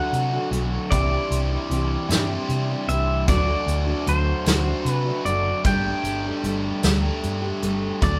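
A straight 6/8 feel carries this hopeful, jangly folk rock and heartland rock excerpt, where a twangy, compressed pedal steel guitar sings the melody with fingerpicked slide and volume swells over a picked acoustic guitar with fresh strings, a biting, double-tracked overdriven guitar riff, and a round, dark hollow-body bass and a distant, roomy brushed drum kit with a punchy kick that both enter at 0.1 seconds, the band playing live in one studio room with moderate reverb as the chords move from D through Cadd9 to Gsus2.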